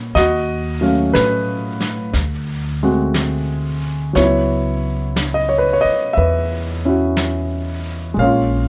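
A melancholic, intimate jazz ballad at a slow 60 BPM in swung 4/4, this short excerpt is cut from a longer piece. The concert grand piano carries the accompaniment up front with a deep bass and short sustain over a chord movement of D#m7b5, D7#11 and C#m7, while the pizzicato upright bass sits close with a woody, warm tone and steel strings. A vintage brush kit joins at 0.2 s, its medium-tuned snare and hi-hat mid-forward and rolled-off on top, all set in a moderate studio ambience.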